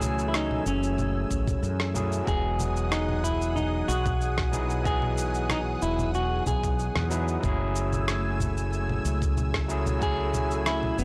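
Smooth and blissful, this 93 BPM sunset chillout excerpt in E major drifts between F#m9 and Emaj9 as a dark, clean semi-hollow guitar carries the melody through tape echo over a barky, overdriven tine electric piano, a thick detuned sawtooth pad with slow-attack chorus and phaser, and a round, up-front fretless bass, while sampler-style congas, shaker and rim click are joined at 1.3 seconds by a thumpy compressed kick, all captured in a dry, gritty hardware recording with transformer saturation and light digital ambience.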